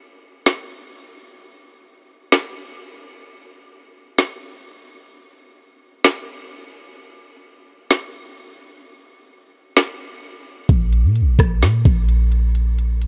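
A half-time trap groove at 129 BPM in 4/4 sets the pace of this spacious, hazy cloud-rap hip hop excerpt, cut from a longer piece and tuned to A4 = 437 Hz. The electronic, produced drum kit comes in at 0.5 seconds and sits up front, with a knocking kick, a woody snare, crisp hi-hats and a rim click. At 10.7 seconds a clean 808-style bass joins, ranging from Bb1 to Bb2. It is also up front, with a deep, boomy sine tone, a fast attack and a dark, decaying tail. A digital ambience hangs around the parts and adds to the atmospheric feel until the clip stops at 13.1 seconds.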